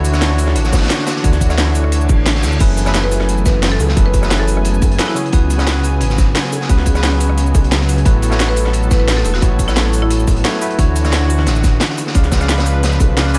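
A soulful, rolling liquid drum and bass excerpt in F# minor at 176 BPM opens with a bell-like, barky electric piano through digital delay, a smooth analog pad with chorus, tremolo and sidechain pumping, a menacing, detuned saw bass with a filter swell up front, and a drum and bass kit with a cracking snare and crisp hats. A gritty, saturated breakbeat kit with a rolled-off top layers in almost at once, a tight electronic kick arrives at 0.7 seconds, a faint reverse cymbal appears briefly, and the chords move through Dmaj9, F#m11, C#7sus4 and A69. From 3.0 seconds a woody marimba struck with hard mallets carries the melody in two phrases through tape echo in the background. From 3.8 seconds high-tuned bongos played with hard hands sit further back, and the drum kits and kick share a studio reverb.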